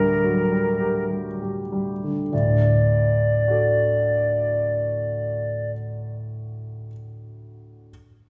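Bathed in the lush reverb of a church or concert hall, this short excerpt from a longer romantic classical duo unfolds in D major at a slow, rubato 46-56 BPM in 3/4, with a lyrical, tender mood. A pure, straight-toned silver concert flute sings the expressive melody with a crisp attack until 5.7 seconds. A clear grand piano with deep bass accompanies it, slowing over the opening Gm/D harmony before settling onto D at 2.3 seconds, and rings on alone until 7.9 seconds.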